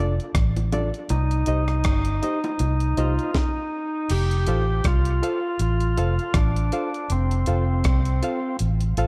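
A dark, heavy dub reggae excerpt with light reverb, moving at 80 BPM in 4/4 with a swung sixteenth-note feel over chords of Dm, Cm and F. A round, foam-muted vintage electric bass sits up front beside a gritty, pitched-up breakbeat kit with a thumpy kick, while a barky, lightly overdriven reed electric piano plays stabs through spring reverb and dub echo. Low-tuned bongos with hard hands drift in the background from 0.6 to 3.2 seconds, and a clean tonewheel organ carries the melody with dub echo from 1.1 seconds, after a break at the start and a stop from 3.3 to 4.1 seconds.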